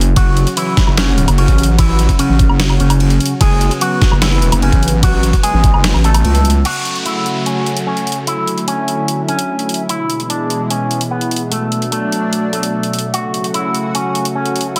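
Heavy and aggressive, this slice of a longer wobble dubstep track moves at 148 BPM in a half-time 4/4 feel, centred on F# minor with the tuning set slightly low at A4 = 438 Hz. It opens on the drop, where a saturated, detuned wobble bass sits up front with overdrive and chorus, joined by a knocking, overdriven electronic kick that enters at 0.2 seconds and drops out at 5.8 seconds. Throughout, a layered dubstep kit supplies a deep snare, bright hats, crash, ride and woodblock, while a lush, thick unison pad holds sustained sawtooth-and-square chords with a slow attack, chorus and sidechain pumping. Over this, a clean, twangy electric guitar picks the melody through an envelope filter, spring reverb and delay. At 6.7 seconds the bass falls away, a soft downlifter sounds, and a filter sweep moves across the pad as the chords travel from F# minor through D, E and B minor before returning home. 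The whole is set in light digital ambience and mastered dense and heavily limited.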